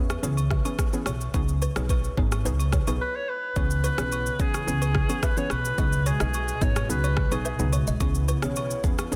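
A woody, dark upright bass and an up-front electronic afro-pop kit with a deep kick, rim click, shaker and softly clipped snare drive this sultry, mellow afrobeats excerpt at 108 BPM in C# minor, where a round, chorused pluck and a ringing kalimba with tape echo circle over C#m7 and G#m7, agogo bells and woodblock sit in the background, a distant alto saxophone with vibrato and tape echo takes a solo from 3.0 to 7.7 seconds, and a hollow, flute-like pad with ensemble chorus enters at 3.6 seconds, all set in light small-room ambience under a dense, heavily limited master.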